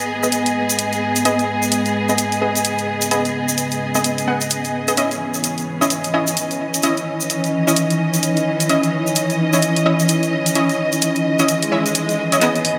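Drenched in a lush hall reverb, this gritty, swaggering bass house excerpt moves at 129 BPM with a 16th-note swing, shifting from G#m to C#madd9 at 5.0 seconds. A tape-warm garage drum kit of handclaps and hi-hat, joined by a grainy acoustic tube shaker, drives beneath dark, woody bowed strings sitting up front and a deep, moody sawtooth pad with chorus and a sub octave. Punchy, bright orchestra-hit-like synth stabs with delay cut through as filter sweeps run across both stabs and pad, before a swell and riser enters at 11.6 seconds and a drum fill closes the passage at 12.4 seconds.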